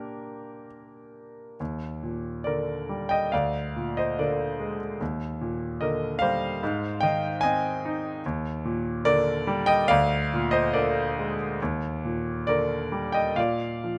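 A clear concert grand piano opens alone on a Bb6 chord, setting a tender, calm mood for this short passage of lyrical classical solo piano cut from a longer piece. At around 72 BPM in 4/4, the playing moves with a loose, rubato feel, the beats stretching unevenly as the music settles into Eb major. From 1.6 seconds a new section begins, circling through Ebmaj7, Bb9/D and Ab harmonies before coming to rest on Bb at 13.4 seconds. The piano spans from D2 up to Ab5, its deep bass and polished, intimate tone sitting up front, with the noise of the action audible beneath the notes. Close, detailed microphones and a light touch of reverb keep the sound present and immediate across its 14 seconds.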